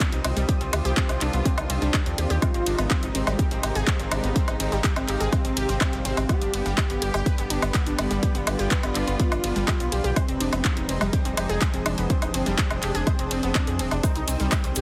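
A straight 4/4 pulse at 124 BPM drives this dark, dramatic melodic techno excerpt in C harmonic minor, with a punchy, up-front electronic kick and a layered house kit of handclaps, hi-hat, ride cymbal and woodblock, both in studio reverb, while a round, deep analog bass enters at 0.1 seconds under a Cm, Ab, G, Fm7 progression. Detuned, wave-folded unison pluck arpeggios with dub echo, veiled con sordino strings holding sustained chords, and a cloudy, evolving granular pad all pump with the sidechain, and from 1.5 seconds a fat, mellow analog lead with ensemble chorus, delay and vibrato sings in the background. A grainy cabasa slips in at 14.0 seconds, and the whole mix carries a heavily compressed, radio-like sheen with light reverb.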